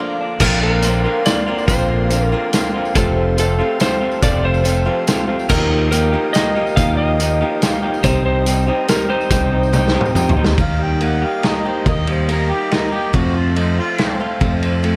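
This wistful, dusty slice of folk rock and heartland rock in 3/4 opens on a brief break of woody, picked steel-string acoustic guitar, shimmering musette accordion chords and a slightly broken-up, lo-fi electric guitar riff from a small old amp. At 0.4 seconds the band arrives: a loose indie drum kit with a punchy kick and dark cymbals sits up front beside a bright, direct fingered electric bass, while a jingly tambourine stays in the background. Over chords moving from Bbadd9 through F and Ebadd9 to Cm, an electric slide guitar carries the melody, its dark, compressed tone played with fingerpicks and fed through analog delay. A drum fill leads into the second section at 10.6 seconds, where the slide guitar and tambourine have stopped and a mellow, distant harmonica with vibrato and a soft attack takes up a second line over Eb and F. The accordion, with its reedy wet tuning, and the acoustic guitar on old strings stay tucked behind, and light reverb with small room ambience lends the recording an intimate feel.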